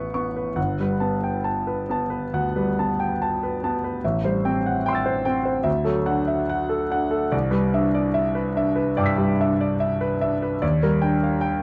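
A clear, intimate concert grand piano opens this wistful, mysterious impressionist solo piece, moving at about 72 BPM in 4/4 with uneven, rubato beats. Sitting up front with deep bass and audible action noise, the natural-sounding piano ranges from G1 to B6, drifting through lush chords such as Gmaj9, Am7 and Cmaj9 before an Ebmaj7 appears at 10.6 seconds. Light reverb and a dark production frame this short 11.6-second cut from a longer piece.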